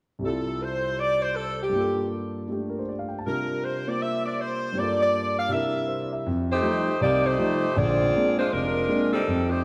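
A concert grand piano opens this jazz excerpt at 0.2 s, joined almost at once by a saxophone section carrying the melody, in a joyful, brassy swing at 160 BPM in 4/4. The saxophones play as a tight, up-front section with a light vibrato, soft attack and smooth top, ranging from G3 to F5. Beneath them the piano accompanies with an intimate, vintage character, deep bass reaching down to F1 and audible action noise, its chords moving from Fmaj9/C through Gm9 and C7sus4 to Gm7 and C9. At 6.3 s the harmony shifts to F mixolydian for a second section built on F9 and Bb9, and both parts play on until the cut at 9.6 s. A wet concert hall reverb with a 1.9-second decay surrounds the performance.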